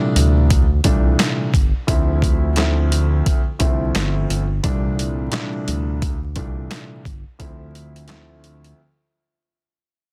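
Gritty and dark, this swung boom-bap hip-hop cut at 87 BPM in D minor pairs a mellow, filtered concert grand piano with audible action noise, moving between C13 and Dm7, over a portamento-gliding sawtooth-and-square synth bass and a compressed, pitched-down sampler drum kit with a thumpy kick, medium-tuned snare, handclaps and hi-hat, all set in a small room with vinyl crackle and a dense, heavily limited master, fading throughout before a break at 8.8 seconds.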